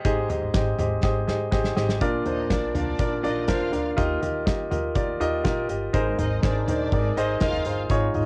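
A lightly reverberant home cassette recording carries this warm, hopeful piano-driven pop at 122 BPM in 4/4, where a present, polished grand piano sits up front over a loose indie drum kit with a punchy kick, fat snare, pumping room and rolled-off top that plays a fill from 1.0 to 2.0 seconds, a woody, growly pizzicato upright bass, and a distant, lush bowed violin section with expressive vibrato that enters at 2.3 seconds as the chords move from Abmaj7 through Bb and Ebadd9 to Abadd9.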